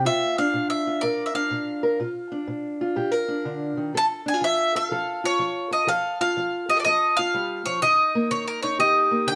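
A bowl-back mandolin and a fingerpicked steel-string parlour guitar start together, the bright, double-strung mandolin carrying the melody up front over the guitar's dark, boxy accompaniment. This gritty, laid-back acoustic country blues duo moves at 124 BPM in 4/4 with a swung eighth-note feel in Bb major, its chords passing from Bb to F at 3.9 seconds and to Eb at 7.8 seconds. Light reverb surrounds the sound of this short cut from a longer piece.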